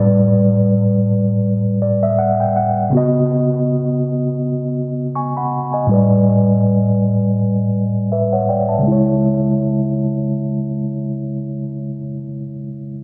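Hip hop at 81 BPM in C# minor with a gentle 16th-note swing, this hazy, melancholic fragment of a longer piece features a mellow, clean tine electric piano playing solo and up front from 0.0 to 13.0 s, colored by a low-pass filter sweep through its first 8.8 seconds, a fill at 1.4 s, and tape echo, moving through A9sus4 and C#9sus4 chords before settling on C#m, all in a dark production with a short, wet studio reverb.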